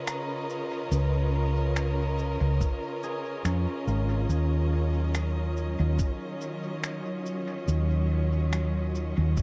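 A dark, round hollow-body electric bass sits up front in this spacious, deep ambient dub excerpt at 71 BPM in Eb minor, carrying the low end beneath smooth, focused bowed strings whose vibrato-laden sustained chords move from Db13 to Ebm9. A fingerpicked concert harp rings softly in the background with dub echo until 6.4 s, while electronic finger snaps and cabasa, also steeped in echo, tick through a gently swung groove. A muffled, thumpy, compressed kick drum joins at 2.6 s, and studio reverb gives the whole mix an echo-heavy, cavernous depth.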